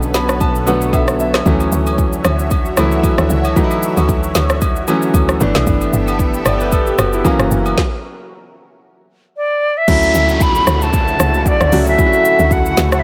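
A clear, up-front grand piano fill opens this relaxed amapiano passage in D major at 114 BPM, over a lush, detuned unison pad with chorus, phaser and sidechain pumping, a deep house drum kit with a deep kick and woody snare, agogo bells and woodblock, and a brief fat analog bass. At 1.5 seconds a punchy, mellow log drum bass takes over the low end beneath swung sixteenths, and the groove breaks off at 7.8 seconds. A pure, expressive concert flute with vibrato and delay arrives just before the drop at 9.9 seconds, with a downlifter sitting in the background and light reverb around the whole mix.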